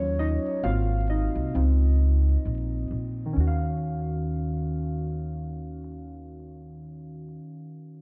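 Hazy, melancholic lo-fi hip hop opens on muted, felt-like synth keys, soft and mellow with a chorus shimmer and a filter sweep, carrying the first 3.4 seconds as a solo, while a thumpy, woody pizzicato upright bass also sits up front in the mix. The keys drift through lush minor-ninth and major-ninth chords with a lazy swing. Vinyl crackle and a light small-room reverb wrap the intimate scene before the bass drops out at 7.4 seconds, leaving the keys to close this fragment of a longer piece.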